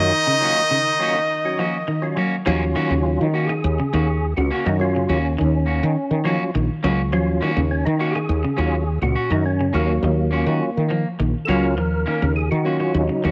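Funky and hypnotic, this afrobeat excerpt opens with a short horn break in which a brilliant, forceful trumpet with slapback echo leads over a clear second trumpet and a baritone saxophone that also carries slapback echo until 2.1 s, after which a fat, percussive tonewheel organ with key click, chorus vibrato and slow rotary speaker takes a solo from 2.5 s over a growly, round fretless bass with lush chorus and two twangy, slightly broken-up electric guitars, one playing arpeggios and the other stabs, set in light small-room ambience.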